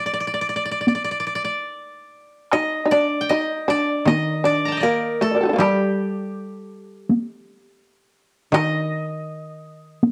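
A buzzing, fretless shamisen, plucked with a plectrum, plays the second line in this austere, calm piece of Japanese traditional chamber music, its powerful voice sitting up front from the first moment. Above it, a bright koto played with fingerpicks carries the melody in a dry, woody voice. A taiko ensemble struck with hard sticks joins at 0.9 seconds, close and forward in the sound. At 4.1 seconds a second, mellow koto adds a low accompaniment beneath the others. The tempo is rubato, drifting between 70 and 83 BPM in 4/4. The strings have a cassette-tape colouring, and light reverb and studio ambience frame this homespun cassette recording, a short cut from a longer work.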